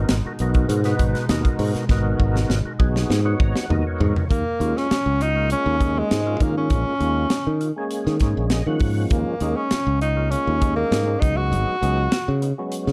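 A driving, funky electric jazz fusion excerpt in Eb minor at 100 BPM opens on an Abm9 chord, with a lightly overdriven, percussive tonewheel organ through a slow rotary speaker, a shimmering, retro pulse-width pad in the background, a bright, direct fingered electric bass and an airy studio drum kit with a high-tuned snare and a punchy kick, before a drum fill and an organ fill lead at 4.3 seconds into an Eb9sus4 passage where the pad drops out and a smooth-topped tenor saxophone takes a vibrato-laden jazz solo up front, moving to Db9sus4 at 11.2 seconds in a dark, warm production with light reverb.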